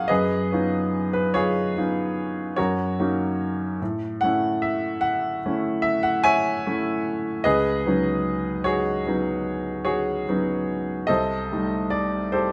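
Impressionist solo piano in a classical vein, this luminous, dreamy fragment of a longer piece drifts in 9/8 at about 49 dotted-quarter beats per minute, with a free, rubato feel. A clear baby grand plays alone from 0.0 to 12.5 seconds, ranging from C2 to Ab5 and moving through lush harmonies such as Db9/Gb, Gb6, Amaj7, Db9sus4 and a closing Cm6. Close, detailed miking keeps the piano natural and up front, its long sustain blooming into a moderate stone-room reverb.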